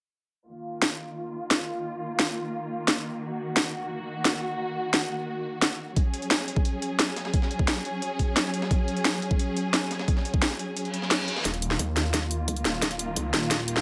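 A light reverb frames this dark, mechanical and aggressive drum and bass excerpt at 175 BPM in Eb minor, opening on a lush, bowed symphonic string section holding sustained chords under sidechain pumping and a filter sweep, soon joined by an up-front drum kit with a cracking snare, bright hats and overdrive. At 6.0 seconds an overdriven, knocking electronic kick arrives alongside a gritty, pitched-up, tape-warm sampler-style breakbeat kit with a medium-tuned snare, and the kick drops out briefly as a reverse cymbal and riser rise in the background. From 11.5 seconds a swirling, thick detuned saw bass with phaser and tube saturation enters for a build-up and drum fill.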